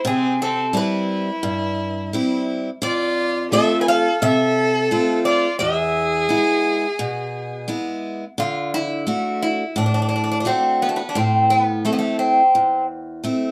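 A straight 4/4 pulse at 86 BPM carries this moody, bittersweet piece of Greek folk from a bouzouki band, tuned slightly flat to A4 = 435 Hz and cut from a longer performance. A picked steel-string acoustic guitar holds the accompaniment for the whole passage, bright and up front, with finger squeaks on the strings. The Greek bouzouki takes the melody with a metallic, double-string ring and some octave-doubled strings, sitting forward until 12.8 seconds. A clear bowed violin adds a smooth, even second line with vibrato alongside it, then drops out at 7.6 seconds. The harmony moves from C to F to E, then to D as the second section begins at 8.4 seconds and on to A minor at 11.2 seconds, all set in a moderate small-room ambience.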